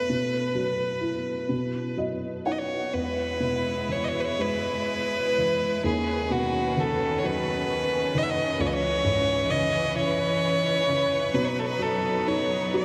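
Soaked in a huge ambient reverb with an 8.8-second tail, this dreamy, nostalgic Celtic slow air drifts in rubato 6/8 at around 40-45 BPM in E major, tuned to A4 = 445 Hz. A rich, smooth solo fiddle carries the tender melody up front with light vibrato and tape echo, while a felt-muted upright piano gives soft, dark, intimate accompaniment with short sustain, audible action noise and subtle chorus, adding a fill from 1.5 to 2.9 seconds. At 3.0 seconds a clear symphonic string section enters with even, bowed sustained chords moving from E through C#m7 to B, in a fragment cut from a longer piece.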